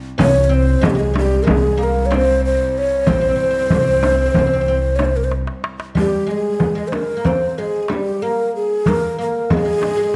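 Turkish makam ensemble music in a soulful, hypnotic 9/8 at 187 BPM in eighths, with a breathy, hollow ney carrying the melody up front with a slapback echo, while a woody fretless oud plays a deep second line beneath it. A rich bowed cello section holds a background drone and drops out at 6.0 s, and a pizzicato upright bass with steel strings anchors the low end until 5.4 s. A small clay darbuka and a large, vintage-sounding frame drum are played with soft hands, and a drum fill arrives at 5.3 s, all captured by close, detailed microphones in a moderate recital hall reverb in this short excerpt from a longer piece.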